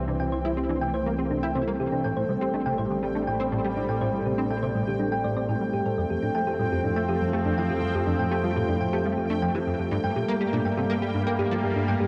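A straight 4/4 pulse drives this short cut from a longer piece of ambient, sequencer-driven space music, expansive and mysterious as the chords move from C through Am7 and F to Gmadd9. A bright, detuned sawtooth pad with a filter swell and shimmer reverb sits up front, while a punchy, funky analog bass riff with a filter sweep runs throughout, its tape echo trailing. Around them, a nasal pulse-width drone hums low, a dark, tine-like FM pluck traces arpeggios in the background, and a resonant stepped-filter texture bubbles on a single high G, all bathed in a wet plate reverb.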